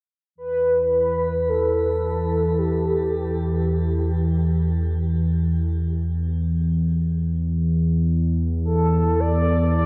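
Dark ambient drone in free time, vast and ominous, cut from a longer piece and set in a vast, echoing space with a huge reverb tail. A mellow, horn-like synth lead enters at 0.4 seconds, round and softly attacked with vibrato and a filter sweep, its melody sitting between G4 and D5 and coloured by chorus, phaser, shimmer reverb and tape echo. From 0.7 seconds an evolving analog drone holds the low register from E2 to E3, resonant and sustained with ring modulation, pulse-width movement, a slow attack and long release, both parts placed up front.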